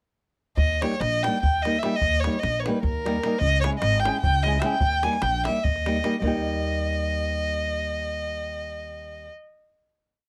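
Close, detailed microphones and a light reverb frame this short, complete Balkan wedding-band piece in 7/8, a bittersweet and fiery tune in Eb major pulsing at 297 eighth-note beats per minute. A dark bowed violin sits up front with expressive vibrato, soft attacks and portamento, spinning hook-like motifs. A fingerpicked flamenco guitar adds off-beat triads with audible finger squeak, a woody, growly pizzicato upright bass holds root and fifth on the main beats, and a tight, dry davul drives a two-stick pattern until 6.4 seconds, leaving the others to ring out on a final chord from 6.2 seconds.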